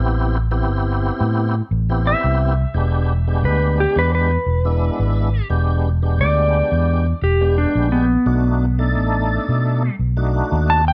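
A clean, dark lap steel guitar carries the melody from 2.1 seconds, its up-front slide lines shaped with volume swells in this short cut from a straight-eighth soul blues with a gritty, swaggering mood. Beneath it, a round, amped fingered electric bass anchors the groove while a full tonewheel organ, lightly overdriven and turning through a slow rotary speaker with chorus vibrato, sits further back in the accompaniment. The harmony moves from Am7 to E7#9 and then B7#9, all set in a light reverb.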